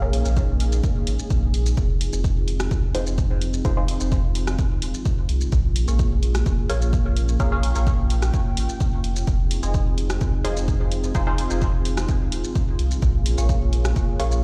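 Dub techno at 128 BPM in F minor, this meditative, cavernous piece is cut from a longer track and moves between Bbm7 and Fm7 chords. A dark analog pad holds sustained chords with a slow attack and long release, its detuned sawtooth tone thickened by chorus and shaped by sidechain pumping. A filtered dub chord stab plays muted, mellow stabs with a filter pluck, phaser and dub echo, and from 2.1 seconds a second filtered stab adds a quieter riff in the background, colored by phaser and analog chorus. Underneath, a pure sine sub bass stays clean and smooth, pumping with the sidechain, while a punchy electronic kick drives the beat alongside a dry analog drum machine playing hi-hat, rim click and shaker, both drum parts touched with studio reverb. The whole mix sounds as if played on a big sound system in a bare room, bathed in large studio reverb.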